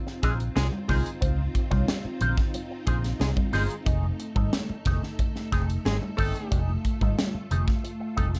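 A round, foam-muted vintage bass and a crisp, up-front fusion drum kit with a high-tuned snare and punchy kick anchor this cool, hypnotic funk excerpt, while a clean, compressed electric guitar through an envelope filter with wah, a tight, mellow horn section doubled in octaves, silky string-machine chords with ensemble chorus and bright, thin-skinned congas in the background shift from Dbmaj9 to F7#9 at 3.9 seconds under light reverb in a dark production.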